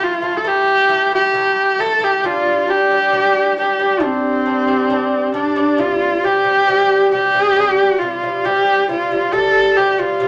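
A single bowed horsehead fiddle leads this Mongolian folk piece, sitting up front with a husky, focused and biting tone, shaped by vibrato and portamento across its horsehair strings. Beneath it, an acoustic lute plays fingerpicked arpeggios on double gut strings, some doubled at the octave, giving a bright, delicate shimmer at a lower level than the fiddle. Both parts play together for the full 10.3 seconds, in a straight, even 4/4 feel. The mood is vast and proud, and the music moves into a new passage at 5.8 seconds as the harmony shifts. A short, wet club ambience surrounds the pair, and the recording is a brief cut from a longer piece.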